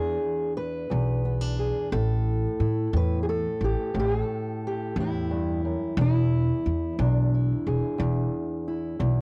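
A fingerpicked steel-string acoustic guitar with a dark tone and audible finger squeak carries the melody, while a woody, thumpy pizzicato upright bass with transformer saturation sits up front beneath it, in a laid-back yet rollicking acoustic country blues section cut from a longer piece. Both parts play throughout in a straight 12/8, moving from E7 to A5 at 1.9 seconds and back to E7 at 6.0 seconds. The home cassette recording carries a light reverb.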